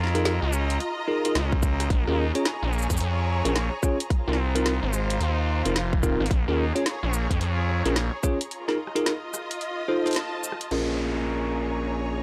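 A swung sixteenth-note groove in four drives this swaggering, funky glitch hop fragment, cut from a longer piece. A tight, up-front electronic kick joins at 1.5 s and drops out at 8.4 s, while a drum kit re-recorded in a small room supplies a woody snare, bright hats, rim click, shaker and crash, with a band accent landing at 10.2 s. Underneath, an aggressive, driven sawtooth synth bass with oscillator sync, ring modulation, a filter pluck and tube saturation sits up front in the low register. A bell-like, clean tine electric piano plays stabs colored by 12-bit sampler grit, sidechain pumping, low-pass filtering and analog delay, and it takes a filter sweep at the close as a downlifter sounds. A lush, bowed symphonic string section with vibrato pumps beneath the chords Db69, Bbm7, Ab69 and F7, all inside a dry, gritty hardware recording with digital ambience.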